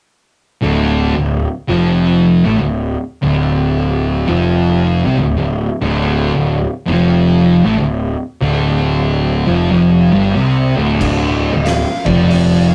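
A rough, tube-saturated rehearsal-room sound with moderate studio ambience carries this hypnotic, sludgy stoner and doom metal fragment at 92 BPM in swung 4/4 and D minor, where a dark, up-front fuzz guitar riff and a second, warmer fuzz guitar tucked in the background ride over a punchy, overdriven picked bass from 0.6 seconds, an oversized low-tuned drum kit with a boomy kick, fat snare and dark cymbals crashes in at 11.0 seconds in a bright stone room, and a compressed fuzz lead guitar adds a high melody from 11.6 seconds.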